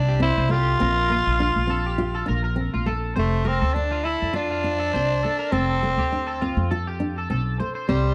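Danceable and joyful, this short excerpt of highlife guitar band music moves at 102 BPM in 4/4 with a light swing, set in F major, with the harmony shifting from Csus2 to Bbsus2 before settling on F at 3.2 seconds. A raspy, gritty tenor saxophone carries the melody up front with vibrato and a punchy pop edge, over a woody pizzicato upright bass and a full-bodied, fingerpicked nylon-string guitar in a deep classical vein. From 0.1 seconds a twangy, slightly broken-up electric guitar picks arpeggios colored by subtle chorus and tape echo, all within a light reverb.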